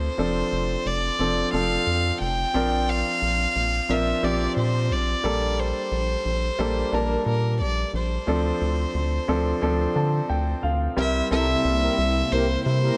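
A floating, pure-toned solo violin carries the melody up front in this nostalgic, romantic pop excerpt at 89 BPM, bowed softly with a slightly boxy character over a polished baby grand piano and a rubbery, bouncy square bass. The chords move through F6, Bbadd9, Gmadd9/Bb and Dm7, and the piano plays a fill from 9.6 seconds before the harmony lands on C7 at 11.0 seconds. There, a swirling phased analog pad joins in the background, followed moments later by mellow, round synth brass stabs, all within a light small-room ambience.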